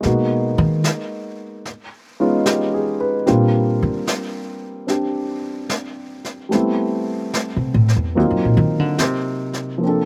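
This jazz ballad, cut from a longer piece, has a tender, intimate mood and a gentle swing in 4/4. The upright bass takes the solo for the full 10.1 seconds, plucked on steel strings with a woody, up-front tone. Beneath it, a baby grand piano supplies a warm accompaniment with a touch of slapback echo, and the soft clatter of its action can be heard. Brushes on a medium-tuned snare drum sit lower in the balance, natural and close, carrying the same slapback echo. The harmony moves through rich extended chords from Abm7 and Db9 to Bb69, Am9 and Ebm69, and the dry, roomless sound keeps the trio feeling close at hand.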